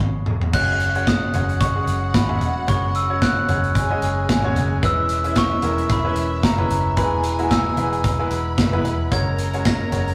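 A lightly swung 4/4 groove opens with a drum fill from a punchy, up-front studio kit with bright cymbals, carrying this uplifting, anthemic piano-driven pop fragment from a rough rehearsal-room recording, where a clear, polished concert grand and a dark, foam-muted picked electric bass support a bell-like glockenspiel melody entering at 0.5 s alongside a smooth, bowed violin section with light vibrato, before a very quiet, jingly tambourine touches in at 9.7 s.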